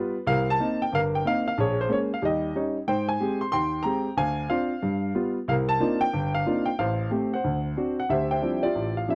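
A dry, close studio sound with a 1970s character and light reverb frames this short jazz excerpt, cut from a longer piece. A single grand piano carries the whole performance, its tone warm, smooth and vintage and placed up front. The mood is smoky and swinging, moving at a brisk 184 BPM in 4/4 with a swing feel on the eighth notes. The piano ranges from G1 up to C6, moving through a chain of chords that includes Cm7, Bbm7, Eb7, Abmaj7, Dm7b5 and G7, then Cm11, Am7 and D7. Around 8.1 seconds the harmony shifts to Dm11 as a new section begins, and the clip ends at 9.2 seconds.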